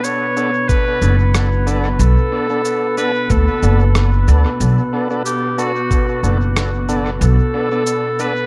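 Hazy and meditative, this ambient dub fragment, cut from a longer piece over a single Bm7 chord, sets a clear, soft-attack clarinet melody with vintage sampler grit and dub echo above a warbling, nostalgic tape-like pad and a glassy, drifting harmonics texture in the background, while a thick tonewheel organ with slow rotary speaker adds echoing stabs from 0.4 seconds, a woody pizzicato upright bass sits up front from 1.0 seconds, and a muffled, thumpy overdriven electronic kick joins pitched-down cabasa and rim clicks in a swung, echo-heavy mix.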